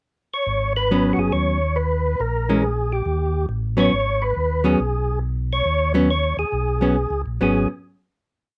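Close, detailed microphones and a moderate small-room ambience give this short, complete jazz piece an intimate, present sound, with each instrument sitting up front. The mood is bluesy and soulful, carried by a swinging 4/4 groove that opens with a brief pickup bar before settling into a minor-key progression. An overdriven tonewheel organ takes the melody from 0.3 seconds, its gritty, percussive tone colored by third-harmonic percussion, chorus vibrato and a stopped rotary speaker as it sings short, motif-based phrases. Beneath it, a second tonewheel organ plays a round, dark two-feel bass line from 0.5 seconds, treated with chorus vibrato and a slow rotary speaker. A clean, picked hollow-body jazz guitar joins at 0.9 seconds with syncopated comping in three- and four-note chord shapes, and the piece comes to rest on a final chord at 7.4 seconds.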